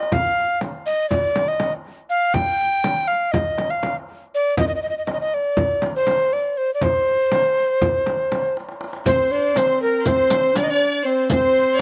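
Longing and melancholic, this cut from a longer Turkish makam ensemble piece moves in 9/8 at 242 eighth-note beats per minute in C makam ussak. A breathy, mellow alto recorder with vibrato and a soft attack carries the melody up front, over a clay-shelled, distant darbuka and a deep, close frame drum struck with hard hands. After a drum fill at 8.6 seconds, a dark clarinet and a rich, earthy chamber violin section with light vibrato and slapback echo enter as second lines around 9 seconds, joined by the bright jingles of a dry riq, all under a light reverb with an open-air feel.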